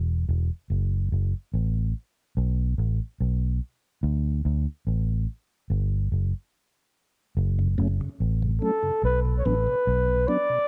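Heavy and spacious, this reggae passage at 72 BPM in F# Phrygian opens on a round, punchy, foam-muted electric bass that sits up front through F# minor and D5 chords before a brief break ending at 7.4 seconds. A soft, flute-like tonewheel organ with chorus vibrato, key click and slow rotary speaker enters at 7.6 seconds. A breathy, whispered flugelhorn with a smooth top and dub echo takes the intimate solo melody from 8.6 seconds over F# minor and B minor, all in a dry, close sound.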